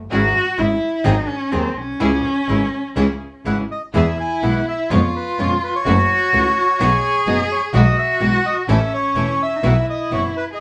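Nostalgic and passionate, this rubato tango excerpt at 126 BPM opens with an expressive bowed cello solo rich in vibrato and portamento over a focused bowed double bass, a woody fingerpicked nylon-string guitar with old strings, and veiled, muted string-section stabs lush in the background, before a reedy, dark bandoneon takes the melody at 3.5 s and the music moves from C# minor into E major at 3.9 s, played live in a wet studio room.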